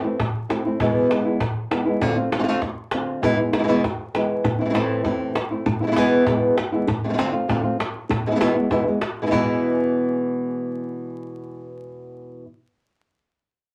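A soft vinyl crackle and the damp bloom of a small, reverberant room frame this brief excerpt of passionate, intense flamenco. The acoustic flamenco guitar carries the melody up front with a dark, thumb-plucked tone, moving through a cycle of Am, E, Dm7 and E. A woody cajon with faint snares joins at 0.2 seconds, sitting further back in the live room behind the guitar. The cajon drops out at 9.4 seconds, just as the music moves into a new section, and the guitar carries on alone until the cut at 12.4 seconds.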